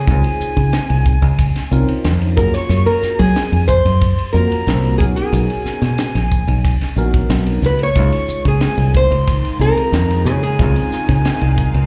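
Electric jazz fusion at 91 BPM in Db major, funky and bright, heard as a live club gig through the PA and cut from a longer piece, with chords moving from Dbmaj9 through Gbmaj9 and Cbmaj9 back to Dbmaj9. A small, fingerpicked nylon-string guitar carries the melody with audible finger squeak and slapback and tape echo, while a breathy, reedy flute with vibrato and chiff plays a second line above it. A punchy, foam-muted fingered bass sits up front over a crisp drum kit with dark cymbals and a high-tuned snare, a clean tine electric piano with phaser fills in the chords, and a detuned, warbling wavetable pad enters in the background at 8.3 seconds.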